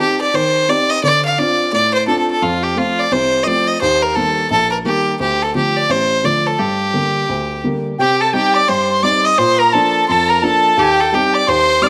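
A clear, nasal fiddle carries the melody from the opening moment, its single bowed line sitting up front with an airy, earthy edge, while a dark upright piano supplies mellow, woody accompaniment low beneath it. This is Celtic folk at a driving 172 BPM in 4/4, with a swung eighth-note feel that gives the short excerpt a wild, restless energy. The harmony moves through minor-leaning chords, opening on Cm and passing through Dm7, F, Eb and Gm. At 8.0 seconds the section repeats, and a bright, reedy wooden whistle enters high above the fiddle with a second line, close-miked with a straight tone and soft attack. A moderate plate reverb lends the whole a spacious sheen, and the fragment breaks off at 11.9 seconds on a Cm/Eb chord, as if lifted from a longer performance.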